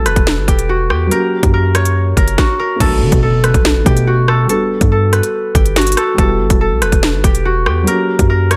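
Drill hip hop in B minor at 142 BPM with a half-time feel, this cold, dark excerpt sets a fingerpicked, ringing concert harp melody up front over a boxy, felt-muted upright piano, a deep, sine-toned 808-style bass with long decaying notes, and an electronic drill kit of hard-clipped kick, sharp snare, crisp hats, rim clicks and crash entering at 0.1 seconds, while a background electronic impact marks the shift at 2.8 seconds as the chords move from Bm7 to Gmaj7, Em and F#, all within a digital ambience.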